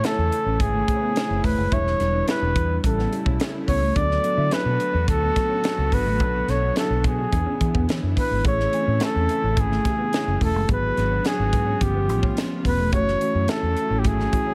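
Breezy and urban, this short cut from a longer piece is polished 1980s jazz-funk pop in A major, moving at a straight 107 BPM in 4/4. A breathy, whispered flugelhorn carries the melody up front with light vibrato and a soft attack, while a tine electric piano, clean and mellow through its built-in speakers with analog chorus, supplies the accompaniment. Behind them, a chamber string section holds sustained chords with a rich, intimate sul tasto sound, and a dark, clean electric guitar plays a fingered riff in the background with subtle chorus. A crisp fusion drum kit sits up front with a high-tuned snare, a tight kick, hi-hat and gated reverb, and a vintage foam-muted fingered bass with a round, amped tone joins at 0.2 seconds. The harmony moves from Amaj7 through D6 and E7 before closing on G#m7b5, G7#11 and F#m7, all in a dry, close-sounding mix.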